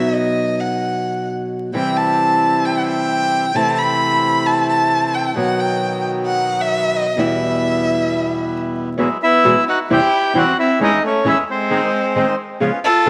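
Elegant and nostalgic, this rubato tango excerpt in E harmonic minor at 132 BPM opens with a close, expressive warm violin solo full of vibrato and portamento over a small, fingerpicked nylon-string guitar, joined at 1.7 seconds by smooth, dark bandoneon stabs, until a reedy, bright, airy bandoneon melody steps up front at 9.2 seconds, all of it set in a wet plate reverb under a veil of vinyl crackle.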